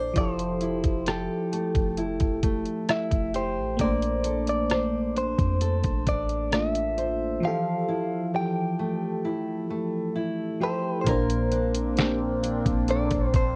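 A detuned 8-bit drum machine sits up front with a thumpy kick, rim click, hi-hat and snare, giving this tender, dreamy contemporary R&B fragment a lo-fi, homemade cassette character. Beneath it, a deep, boomy 808-style bass and a glassy, bell-like FM electric piano with chorus hold down the harmony, while a fingerpicked steel-string acoustic guitar adds full-bodied arpeggios through analog delay and a bright, direct-recorded electric guitar carries the melody with spring reverb. After a break from 7.4 seconds, a shimmering, retro pulse-width pad enters at 11.4 seconds with sustained, sidechain-pumped chords as the harmony moves between Fmaj9 and Bbmaj9.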